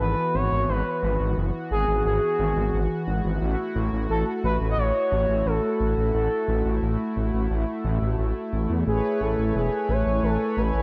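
This driving, cinematic synthwave excerpt opens with three parts together: a thick, detuned sawtooth bass with chorus, a shimmering, warbling pulse-width pad holding sustained chords, and a smooth, expressive lead with vibrato, chorus, slapback echo and delay carrying the melody. The harmony moves from G#m7 to F#m7/A at 3.4 s and settles on Amaj7 at 8.9 s over a straight 4/4 feel. A lush hall reverb gives the mix a big arena sound.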